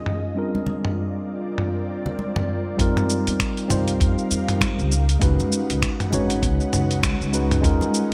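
A mellow tine electric piano, up front and clean with a touch of delay, opens this sunset chillout excerpt in F minor alongside an ethereal, airy pad whose detuned sawtooth layers, sub octave and ensemble chorus drift under a filter sweep through the first 2.8 seconds. A dusty, sampler-style soul kit of finger snaps, hi-hat, shaker and toms joins almost at once, gritty and overdriven, its hats, snare, toms and percussion softened by low-pass filters, while congas sit quietly in the background of a small room. At 99 BPM in 4/4 with a gentle 16th-note swing, the groove feels smooth and wistful, moving through suspended ninth chords from C9sus4 to F9sus4 and then Db9sus4. At 2.8 seconds a woody pizzicato upright bass with gut strings arrives together with a thumpy, overdriven electronic kick, giving the second section more weight underneath. Light digital ambience and a bright 1980s-style production sheen frame the whole piece.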